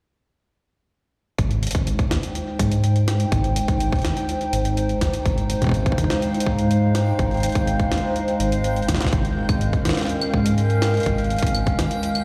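A tight, overdriven electronic kick and a gritty, pitched-up sampler-style jungle kit of claves, hi-hat and snare with tape echo drive this playful, glitchy IDM excerpt at 124 BPM in straight 4/4, arriving at 1.4 s alongside a deep, rumbling detuned saw bass. A warbling, nostalgic lo-fi pad with chorus sustains chords in Ab major from 2.1 s, moving through Abmaj7, Fm7/Ab and Bbm7/Ab, while a dreamy reversed texture swells in from 2.7 s in the background. The mix sits in a lush hall ambience, like a big sound system played in a bare room.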